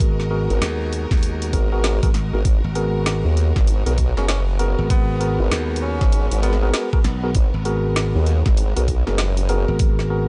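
Glitch hop with a playful, swaggering swing, cut from a longer piece, where an overdriven knocking kick and a drum kit with a woody snare and bright hats drive a saturated, chorused formant-sweep wobble bass and a growly, punchy slap bass under clean tine electric piano stabs with analog delay and pumping sustained string chords, while a clear, close-miked tenor saxophone slips in a brief scooped, vibrato-laden jazz phrase from 4.2 to 6.7 seconds, all in a dry, gritty hardware sound.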